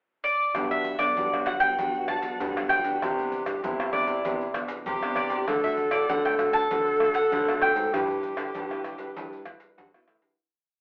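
Samba and choro in G major at 98 BPM, this short, complete piece has a festive, joyful spirit and a straight 4/4 feel. A bowl-back mandolin opens with a brief pickup before the band joins at 0.5 seconds, its bright, picked double strings sitting up front with a motif-based melody built from period phrases. A breathy tenor saxophone plays a counter-melody in a close-miked, subtone jazz style with vibrato, while a growling baritone saxophone carries a samba bass figure, dark and raspy with scooped notes. Underneath, a small-sounding nylon-string guitar fingerpicks thumb bass and syncopated plucked chords with audible finger squeak, and maracas, a tight surdo, pandeiro and tamborim give a vintage, band-limited samba pulse with hard hands. The chords move from Gmaj7 through Cmaj9 and D7 to G6, the whole band sounds as if playing live in one room through a telephone-like filter with wet studio reverb, and the music fades out from 7.9 seconds to its close at 10.4.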